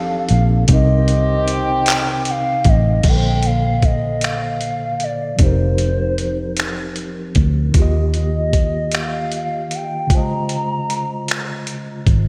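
Slow six-eight R&B at 51 BPM, sultry and yearning, this short cut from a longer piece drifts in a dreamy mix soaked in a lush hall reverb. A hollow, woody synth lead with a clarinet-like voice carries the melody between C5 and Bb5, its soft attack, detuned square and triangle tones, noise layer, vibrato and chorus giving it a sustained, pining quality. Beneath it a mellow tine electric piano, clean and heard through its built-in speakers, supplies the accompaniment, while a dark, round, foam-muted fingered electric bass sits low between F1 and Eb2. A punchy horn section with light vibrato adds delayed stabs only until 2.6 seconds, and from 0.3 seconds a gritty, compressed sampler-style soul kit, re-recorded in a large room and placed up front, brings a thumpy kick, hi-hat, finger snaps, handclaps and crash cymbal. The harmony opens on F13 and Cm7, then moves through Bbmaj9, F9sus4 and Ebadd9 before settling on Dbmaj9.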